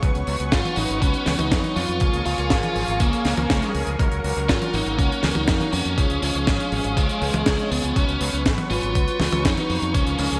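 Muted, veiled strings with vibrato hold sustained chords as a glossy, detuned, chorused polysynth stabs in the background, while a punchy fingered electric bass with tube saturation, a thumpy sampler-style kick and a tight funk kit with a high-tuned snare drive this romantic, playful italo disco groove at 121 BPM through Cbsus2, Bbm7, Gb and Db, and a biting, overdriven lead guitar with digital delay takes the melody from 0.5 s, the mix sitting in a lush hall reverb with bright 1980s-style digital production in this short piece cut from a longer track.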